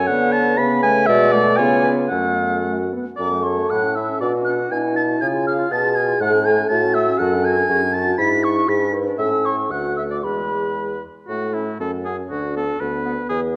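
In a flexible, rubato two-four, this quick classical-period movement for wind quintet sounds graceful and cheerful, with a hollow, close-miked silver flute singing the melody with vibrato and a crisp attack while an up-front oboe carries a soft-edged second line. A clear clarinet sits in the background and a mellow French horn fills in the accompaniment, as a dark, smooth-topped bassoon anchors the bass. The fragment, drawn from a longer piece, is heard through moderate concert-hall reverb and the worn, warbling pitch drift of old cassette tape, with the music turning toward a brighter major key from 7.2 seconds.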